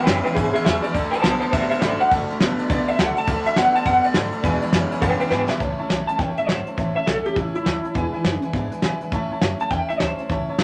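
A moderate club reverb gives this rowdy, retro rockabilly excerpt a roomy sound as it swings at 206 BPM in A major. Up front, a bright, twangy electric guitar through a small old amp carries the melody with tremolo, beside a soft brush kit with a punchy kick and a rolled-off top. Behind them, a lo-fi, slightly broken-up second electric guitar plays a low riff, a full-bodied steel-string acoustic guitar and a mellow upright piano fill in, and a woody, thumpy upright bass holds the bottom, with a drum fill at 5.3 seconds leading into a new section at 5.6 seconds as the chords move from E7 and D to A.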